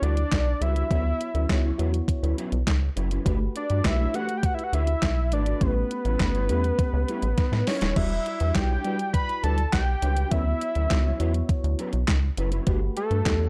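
A straight 4/4 groove at 102 BPM drives this funky, late-night piece of early-eighties boogie funk. A crisp 8-bit drum machine sits up front with a thumpy kick, snare, hi-hat, handclaps and crash under overdrive, adding a fill at 7.4 seconds, beneath a rubbery, nasal square-wave bass shaped by a filter pluck and moving notch. A fat, detuned analog lead carries the melody with vibrato, chorus and slapback echo, while a round FM electric piano with chorus and a clean, fingered electric guitar riff under ensemble chorus move through Em9, Dmaj13, Gmaj9 and A9 in a dark digital ambience, cut from a longer piece.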